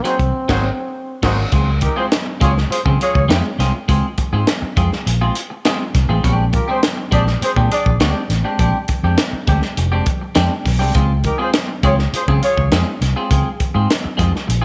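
This funky, gritty excerpt opens with a clear, smooth-topped solo trombone carrying the melody in a pop style over a mellow horn section playing a second line, while a clean, twangy electric guitar adds compressed, picked accompaniment with a subtle chorus. A crisp fusion drum kit and a dark, round, amped, foam-muted fingered bass enter almost at once, and the band plays an accent that drops into a brief silent gap at 0.9 s. The trombone's phrase ends at 1.2 s, and the horns, with their light vibrato, carry on until 12.7 s over a straight 4/4 groove. Up front, the drums bring a high-tuned snare, a punchy kick, hi-hat and crash cymbal in a small, pumping room, with the bass sitting just as close. The harmony moves from Ab9 to Dbmaj7, then Bb13 and back to Dbmaj7, all wrapped in light studio reverb.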